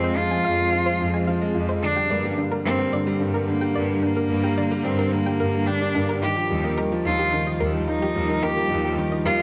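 A rich, bowed solo cello sings the melody up front from the first moment of this moving, melancholic piano and strings electronica excerpt at 109 BPM, joined at once by a warm baby grand piano riff, a bright, lush cello section holding a distant bass line and soft, round plucked arpeggios with chorus and tape echo in the background, while a blurred, evolving granular cloud pad with its own reverb drifts in at 0.3 seconds over Fm, Gm and Ebadd9 chords in a small, echoing room.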